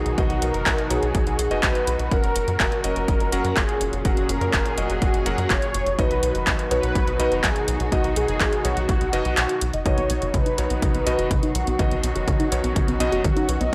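Sunny and playful, this italo disco passage, cut from a longer piece, moves at 124 BPM in a straight 4/4 over chords of B and F#. A mellow synth brass carries the melody with a round, detuned sawtooth tone, colored by chorus, vibrato and tape echo, while a muted studio string section holds veiled, con sordino chords beneath it. A tight sequencer bass drives the low end with a punchy, wave-folded tone thickened by tube saturation, and a clear electric grand piano adds clangy, short stabs through a low-pass filter. The punchy analog electronic kick anchors the groove alongside an overdriven house drum kit of handclaps, hi-hat and toms. The kick drops out at 9.4 seconds before a drum fill takes over at 9.9 seconds, and a warbly, lo-fi dusty pluck enters at 10.0 seconds with chorused, tape-echoed arpeggios under a filter sweep, sitting dark in the background. The whole has a dry, gritty hardware sound with transformer saturation and light reverb.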